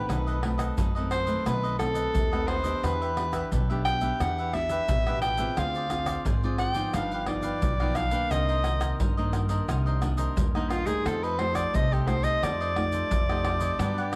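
A clear, close-miked soprano saxophone opens this sunny, festive samba-choro excerpt at 88 BPM, its jazz-style solo carrying vibrato and a touch of tape echo up front, over crisp picked cavaquinho and a full-bodied fingerpicked nylon-string guitar with audible finger squeak. From 0.1 seconds a woody, thumpy gut-string upright bass played pizzicato enters together with the soft-handed egg shaker, deep surdo, pandeiro and tamborim, heard as if in a small room. The harmony moves through B7b9, Em7, Dm7b5, G7b13, Cm9 and F9, all set in a moderate spring reverb.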